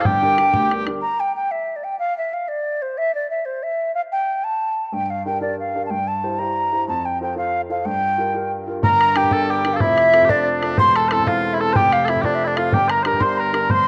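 Cassette tape character and a moderate spring reverb frame this driving, dark and lively Celtic jig in 6/8, where an airy wooden flute with vibrato and a crisp attack carries the melody up front throughout, mellow, sweet small bagpipes and a damped, tight bodhran sound briefly at the start and return at 8.8 seconds, and a worn baby grand piano with long sustain, heard only fleetingly at the opening, re-enters at 4.9 seconds with accompaniment over chords centered on G minor.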